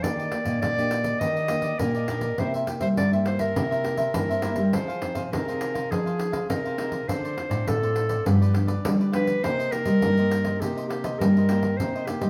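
A clear, up-front solo clarinet carries a bittersweet, nostalgic melody in C minor over a 102 BPM samba and choro groove, backed by a crisp, mellow picked cavaquinho, a dark, thumb-plucked nylon-string guitar, a full-bodied fingerpicked nylon-string guitar bass line with audible finger squeak, and a jingly, soft-handed pandeiro, all played live together in a stone room whose reverb lingers for 0.9 seconds.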